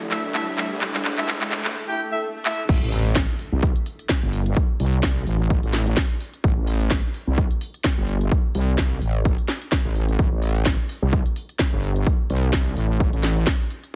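Aggressive, gritty bass house in A minor at 128 BPM with a swung 16th feel, this cut opens on a short build-up where moody, warbling pads, bright horn stabs with light vibrato, background risers and a house kit with cracking snare, crisp hats, handclaps and crash all churn over a heavy, saturated sawtooth wobble bass, until the drop at 2.7 seconds lands with an impact and an overdriven, punchy electronic kick, leaving the resonant wobble bass pumping up front alongside the kit through a heavily compressed, radio-like sound.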